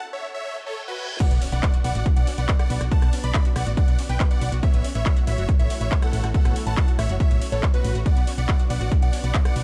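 This uplifting trance excerpt at 140 BPM in B minor opens with a brief build-up and filter sweep, huge detuned supersaw chords carrying the melody with tape echo and sidechain pumping, while a very quiet reverse cymbal rises before an impact marks the drop at 1.2 seconds. From there a punchy, layered kick sits up front with a techno kit of metallic hats, handclaps, ride, crash and rim clicks, and a round, dark FM bass pumps beneath, as a catchy square-wave unison lead, a silky string pad and a bright detuned analog pluck playing arpeggios sit in the background. The driving, euphoric mix is dry and dark, moving between A6 and B minor chords.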